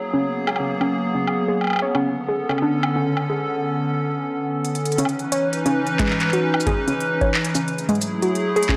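IDM with an intricate, melancholic mood, heard in a short excerpt cut from a longer piece with a gentle swing on the sixteenths. A hollow, flute-like pad holds sustained chords from the start, sitting up front with a slow attack, airy noise layer and chorus, while a warbling, lo-fi pluck spins dark, detuned arpeggios alongside it, colored by chorus and tape echo. An organic electronic drum kit of congas, handclaps, crisp hi-hat, shaker and woodblock enters at 0.5 seconds, tape-toned and re-recorded in a large room, with a filter sweep across its opening and a fill leading into a new section at 5.0 seconds. A deep analog electronic kick joins at 6.0 seconds as the harmony moves through minor ninth chords, beginning on G#m9 and ending on F#m9. The whole has light reverb and a dry, gritty hardware character.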